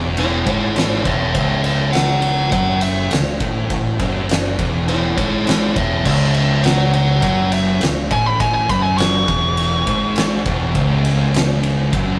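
Hypnotic and heavy, this stoner and doom metal excerpt moves at 102 BPM in 4/4, holding on C# minor as a compressed fuzz lead guitar sits up front and solos from 0.2 to 10.7 seconds. Two thick, picked fuzz guitars, one dark and one warm, grind out the low riff in the background, while a bright, growly fingered electric bass with overdrive runs underneath. An oversized, low-tuned acoustic drum kit with a fat snare, punchy kick, dark cymbals and a gritty, saturated edge pushes forward in a pumping stone room, giving the rough rehearsal-room recording its weight.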